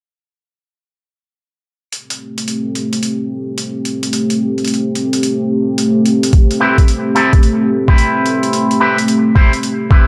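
A swung 109 BPM glitch hop groove in A minor sits on a single Am7 chord, where a deep, detuned analog pad with 12-bit grit, chorus and sidechain pumping enters at 1.9 seconds alongside a pitched-down, overdriven hi-hat, a thumpy, gritty kick arrives at 6.3 seconds, and a bright, twangy envelope-filtered guitar stabs with dub echo from 6.6 seconds, all in a light digital ambience for a gritty, funky mood.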